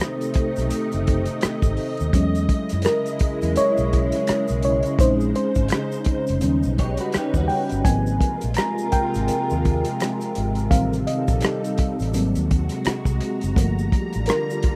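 A mellow FM electric piano carries the lead throughout this introspective, smooth neo-soul and R&B passage, its round, dark tone shimmering with chorus and a faint noise layer as notes strike quickly and decay. Beneath it, a soft string machine holds silky, evolving chords up front, drifting through rich harmony from B7b9 and E6 to Bbm11, Ab69 and a closing Gm7. The groove sits at 84 BPM in 4/4 with a 60% swing on the sixteenths, driven by a dry, muffled soul drum kit with a tight kick, hi-hat and rim click, while finger snaps and a tube shaker add compressed, saturated texture in the background. A vintage muted fingered electric bass enters at 0.4 s with a punchy, foam-muted low end. Briefly, from 6.8 to 7.8 s, an electric guitar through a small old amp adds a slightly broken-up, picked second line coloured by analog chorus. The small room ambience and rough home-demo mix give this cut from a longer piece a lo-fi, intimate feel.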